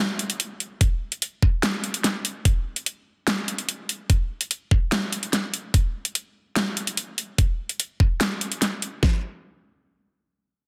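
Aggressive and heavy, this short piece of wobble dubstep cut from a longer track moves at 146 BPM in 4/4 with a half-time feel. Two layered electronic drum kits carry it, both placed up front with a tape-warm character and a huge snare, and between them they bring a knocking kick and metallic hats. One kit, playing hi-hat and snare, enters at 0.2 seconds. The second, built from kick and snare, comes in at 0.8 seconds and runs until 9.1 seconds, just after a new section begins at 9.0 seconds. A light reverb and digital ambience surround the drums, and the mix has a dense, heavily limited modern master.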